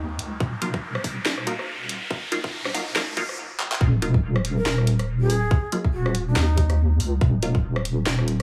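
A deep, chorused wobble bass sits up front throughout this dark, meditative deep dubstep passage with a swung half-time feel. An electronic riser and a filter sweep drive the opening build-up alongside muted, detuned dub chord stabs with phaser and dub echo, and a tight overdriven kick and a garage kit with a cracking snare, handclaps, hi-hat and rim click punch through a small room from the first half-second. A brief stop and a drum fill then lead into the drop at 3.8 s, where a breathy, mellow shakuhachi with vibrato and dub echo carries the melody from 4.6 s.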